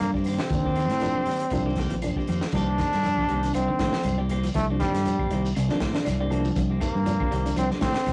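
Funky and intense, this afrobeat passage is cut from a longer piece and moves at 119 BPM in 4/4 with a light sixteenth-note swing, sitting on a C minor seventh in C dorian. A brilliant, close-miked trombone carries the melody up front with vibrato, while a round, punchy fingered electric bass anchors the low end. A reedy, bright electric piano with fast tremolo sits in the background as accompaniment and adds a fill at 5.6 seconds. Two guitars fill out the middle: one at the edge of break-up plays quiet, scooped arpeggios, and a clean picked guitar adds stabs from 0.2 seconds. A crunchy breakbeat kit with a high-tuned snare, punchy kick and rolled-off top enters at 0.1 seconds, surrounded by very quiet ringing congas, distant woody claves and a grainy shekere in the background. The whole take has the rough feel of a rehearsal room, with warm saturation and moderate studio reverb.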